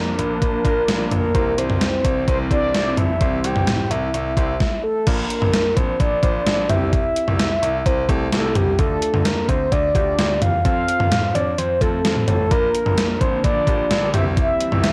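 A mellow, horn-like synth lead with warbling vibrato opens this cool, melancholic synth-pop excerpt in 4/4 at 129 BPM, carrying the melody over round analog keys in the background and a swirling, phased pad that drops out at 4.6 seconds and returns at 12.5 seconds. From 0.2 seconds a gated 80s drum machine sits up front with a thumpy kick, an overdriven gated-reverb snare, hi-hat, cowbell, toms and crash, while a clear concert grand piano plays the bass in its deep low register. The chords move among Bb, C, Dm and F, and the dry, gritty recording keeps the sound close and tight.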